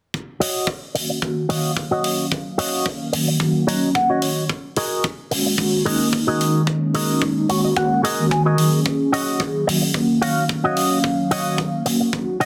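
A tight, up-front acoustic kick and a natural small-room hi-hat carry a lightly swung 110 BPM 4/4 groove in this sunny, groovy nu-disco excerpt, where a dark, clean, fingered electric guitar riff runs through an envelope filter with subtle chorus and slapback echo and adds fills at 3.4 and 7.2 seconds, while mellow synth brass, round, detuned and evolving with phaser, vibrato and sidechain pumping, sustains chords moving from D#m7 to F#69 and back, all set in moderate plate reverb and a dense, heavily limited modern master.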